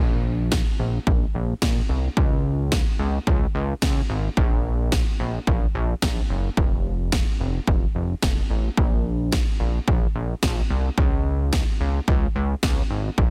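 Dry, with little reverb, this dense, heavily limited modern mix opens as a short excerpt cut from a longer synth-pop piece, moving at 109 BPM in a straight 4/4. The mood is cool and melancholic. A chorused synth bass starts at 0.0 seconds and sits up front, its retro, glossy tone built from pulse-wave and sawtooth sounds, with pulse-width modulation and a filter sweep that keep it evolving. Its notes have a fast attack and sustain low in the register, between F1 and Db2. At 0.5 seconds a punchy analog drum machine joins, also up front, with an electronic, tape-warm kick and snare. The two parts carry the whole passage through a single section that runs to 13.3 seconds.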